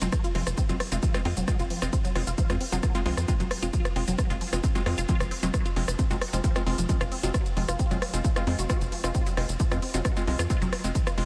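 A squelchy, detuned blip-pluck riff with chorus, phaser, 12-bit sampler grit and delay opens this relentless, hypnotic 133 BPM peak-time techno excerpt in F phrygian, joined at once by crisp, wave-folded wavetable chord stabs carrying tape echo, a tight, nasal sequencer bass pumping against the sidechain, and smooth hats, ride, rim clicks and shaker from a tape-toned techno kit, all driven by a heavy, up-front electronic kick from 0.1 seconds over a single F minor chord in a lightly reverberant space.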